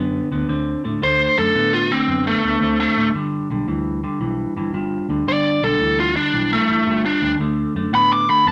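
Heard through a moderate studio reverb, this gritty, laid-back electric blues shuffle excerpt opens with an up-front clean guitar riff over a dark, round, foam-muted vintage bass, and at 1.0 s a biting, bright, overdriven lead guitar enters with a solo over changes moving from D6 to G13 and back.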